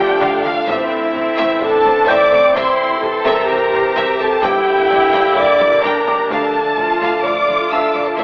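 A wet scoring-stage reverb fills this cinematic hybrid of orchestra and electronics, and the whole mix is narrowed by a thin telephone-like sound. The excerpt is tense and vast, in D minor at 128 BPM in a straight 4/4. Two symphonic violin lines carry it: a soft-attacked, expressive second line sits up front, high above, while a focused melody hangs in the background, and a close, lush viola section fills the middle. A warm French horn section with light vibrato holds sustained chords over a distant, roomy trombone section and an airy, breathy pad with chorus, as a dark, woody cello section and a faint double bass section supply the low end. Very quiet details add texture, including a ringing harp-like synth pluck playing arpeggios with a filter sweep, a boxy grand piano with audible action noise, and a close, dry taiko ensemble that enters at 0.5 seconds and plays a fill around 5.6 seconds. 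A huge, dark impact, barely audible, marks the opening, and the chords move from Dm through Am, C and Gm before returning to Dm at 6.3 seconds.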